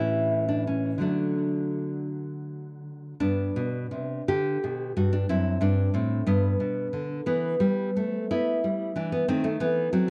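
A classical, baroque-style dance in 6/8, this flowing, radiant passage cut from a longer piece moves at a rubato 54-62 BPM in dotted quarters, starting in D major and shifting to G major at 3.2 s. A solo nylon-string guitar, fingerpicked and up front with a warm acoustic tone and a touch of analog delay, ranges from F#2 to G4 through chords such as G, F#m7b5, Em and D#dim7. A modest small-room reverb surrounds it, and the sound carries the worn, warbling pitch drift of old cassette tape.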